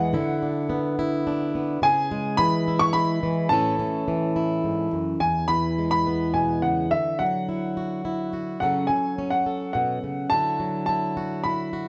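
Upright piano and fingerpicked acoustic guitar begin together in this gentle, peaceful acoustic folk piece in 3/4 at 106 BPM, set in E mixolydian. The clear, woody piano sits up front carrying a high melody, its intimate action noise audible, while the plugged-in guitar adds warm swing-style accompaniment that spans from deep bass to the middle register. A moderate studio reverb gives both a natural sense of space as the chords move through Bm/D, C#m and A before a second section settles on E, Dadd9 and F#m/C#, and the passage is cut from a longer piece at 11.9 seconds.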